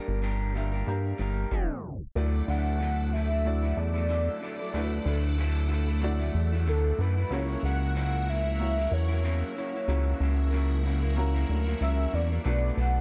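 Nostalgic and dreamy, this dry fragment of swung indie bedroom pop sets a velvety, detuned synth lead melody over an up-front glossy pulse-wave bass, a slightly broken-up lo-fi electric guitar with warbly pitch drift, and a woody upright piano in the background with audible action noise; after a tape stop at 1.5 seconds, a bright, swirling phased string machine joins at 2.2 seconds, holding slow-blooming chords.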